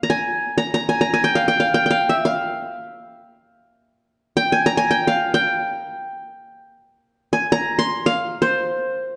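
This short excerpt, cut from a longer piece, opens in a wet, spacious reverb like a scoring stage, its decay lingering about 1.8 seconds, with a soft top end that rolls off above 10.4 kHz. It comes from an Arabic maqam ensemble tradition, played in free time with the tuning set to A4 = 442 Hz. A solo acoustic qanun carries the whole 9.2 seconds, sitting up front in the sound. Its plectrum-plucked triple strings give a warm, bright-edged tone that stays within the range of C5 to C6. The mood is hypnotic and full of longing.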